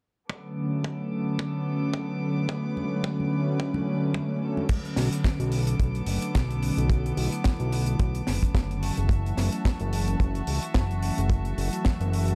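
Nu-disco at 109 BPM with a groovy, sensual swing, this excerpt opens on a smooth, detuned analog pad with chorus, sidechain pumping and delay, and a filter sweep over Bm7, alongside distant bowed chamber strings and a dry, tight kick up front, with congas in the background from 2.8 to 4.7 seconds. An airy funk kit with a high-tuned snare arrives at 4.7 seconds as the harmony moves to F#m7, followed by a fat, saturated sawtooth bass at 5.0 seconds, all in a dark, dry production.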